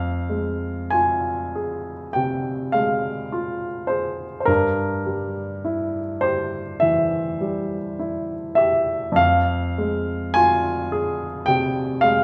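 Melancholic and wistful, this short excerpt from a romantic nocturne for solo piano unfolds slowly in F minor at around 48-55 BPM in 4/4, with a flexible rubato feel. The grand piano sounds present, polished and up front, its short sustain set within a moderate recital hall reverb as it spans F2 to Ab5. The harmony moves from F minor to G minor sixth at 4.5 seconds before settling back on F minor at 9.2 seconds.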